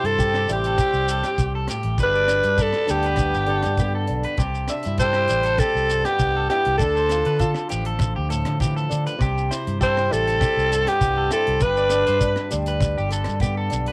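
This excerpt sounds like a home cassette recording with light reverb. It is a joyful highlife guitar band piece in C major at 100 BPM in a straight 4/4, moving through C, G and D minor chords. A growling alto saxophone carries the melody up front, raspy and gritty with vibrato, soft attacks and scooped notes in a jazz style, while a bright tenor saxophone plays a second line further back, coloured by tape, plate reverb and analog delay. A fingerpicked flamenco guitar supplies acoustic accompaniment, finger squeaks audible, and a twangy electric guitar at the edge of break-up picks arpeggios coloured by tape, plate reverb and analog delay. Underneath, a fingered electric bass sounds dark and round, a tight funk drum kit keeps hi-hat, kick and rim click in a small natural room, and a grainy, mellow shekere joins close up at 0.2 seconds. Both saxophones stop at 12.5 seconds, leaving the guitars, bass and percussion to carry on to the end.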